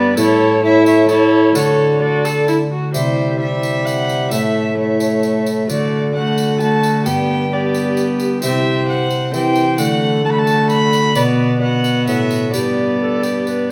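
An airy, bright alto recorder with chiff and vibrato carries the melody from a place in the background, paired with a gut-string violin on a reedy second line in this courtly, festive renaissance-style consort dance in 3/4 at 131 BPM. Beneath them, a rich, distant viola with light vibrato and a ringing, fingerpicked concert harp fill out the accompaniment, while a mellow solo bassoon holds the bass and a jingly tambourine enters at 0.2 seconds. The ensemble is heard from further back in a wet stone room, and this section of a longer piece moves from a brief opening into its second section at 2.9 seconds, ending on a G chord.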